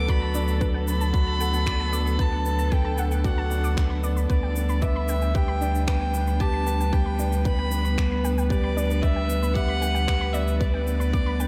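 A round, up-front sub bass anchors this tender, luminous piano and strings electronica excerpt, holding a deep D2 with sidechain pumping in a straight 4/4 at 114 BPM. Above it, a distant, floating solo violin carries the melody from D5 to D6 through tape echo, while a woody, dark string quartet sustains bowed chords with vibrato and sidechain pumping. A clear, smooth concert grand piano with a vintage character plays a riff between B3 and B4, also touched by tape echo. Tucked in the background, a warbling, lo-fi sawtooth pluck spins mellow arpeggios with chorus and echo, joined by a tight electronic kick and a layered, overdriven shaker and finger snaps that sound re-recorded in a large room. The harmony moves from D6 to G/D at 4.3 seconds, and the whole dreamy mix is soaked in a lush hall reverb.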